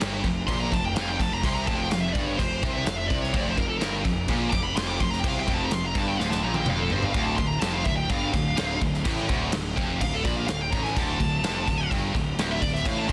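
Heavy metal in an epic, aggressive mood, with a double-tracked, high-gain rhythm guitar riff up front over growly, fuzz-driven picked bass and a punchy acoustic drum kit in a pumping studio room, while a bright, distorted lead guitar solo enters at 0.5 seconds, a drum fill at 6.2 seconds leads into a shift from F5 to D minor, and the whole excerpt sits in a dense, heavily limited modern master.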